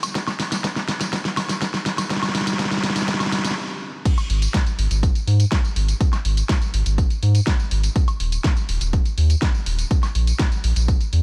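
This progressive house excerpt opens on a layered, produced pop drum kit, with a fat snare, crash cymbal, hi-hat, tambourine and woodblock carrying a build-up and drum fill, while an overdriven, punchy electronic kick joins almost at once. The mood is driving yet bittersweet, in a straight four-beat pulse. The fill gives way to a brief stop at 3.6 seconds before the drop lands at 4.1 seconds. A round, deep analog bass enters at 4.3 seconds with a fast attack and sustained, dark, slightly nasal tone, pumping with sidechain movement as the hats, percussion and cymbals also breathe with that same pumping. The kick, kit and bass all sit up front, the kick carrying a small-room ambience, all wrapped in a light reverb.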